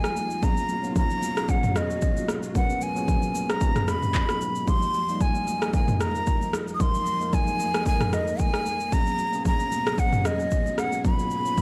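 A swung 113 BPM amapiano groove from an overdriven, up-front deep house kit of deep kick, handclaps, rim click, shaker and toms, with very quiet, distant high-tuned congas, carries this deep, late-night excerpt, where a breathy, vibrato-laden jazz flute with analog delay sings the melody over a clean tine electric piano, lush chorused string-machine chords in the background moving from Abm11 to Fm11 and back, and a barely audible riser entering at 11.0 seconds, all captured in a dry, gritty hardware sound.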